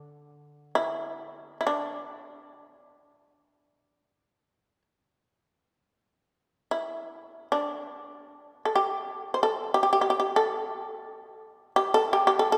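In free time, this brief, austere and calm passage of Japanese traditional chamber music is carried by a powerful, up-front shamisen whose plectrum-plucked, buzzing, percussive melody moves between D4 and C5 for the full 12.6 seconds. A faint, woody koto, plucked with fingerpicks on a low D3, adds a dry touch of accompaniment only during the first 2.0 seconds. The sound sits in a church or concert hall with a wet, lingering reverb, and the recording is clearly cut from a longer piece.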